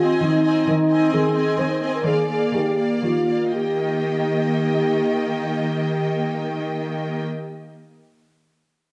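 Classical romantic orchestral music in 3/4: a fast, dramatic yet cheerful and graceful movement in Eb major at 115-136 BPM that slows down over its first 3.5 seconds before arriving on an Eb chord. A distant, lush violin section carries the melody over a clear, expressive second violin line, while an intense viola section fills in the accompaniment and an up-front cello section holds the Eb bass underneath, and a mellow, vintage-toned French horn section sustains chords. This brief cut from a longer piece sits in a wet scoring-stage reverb with a dark, warm production.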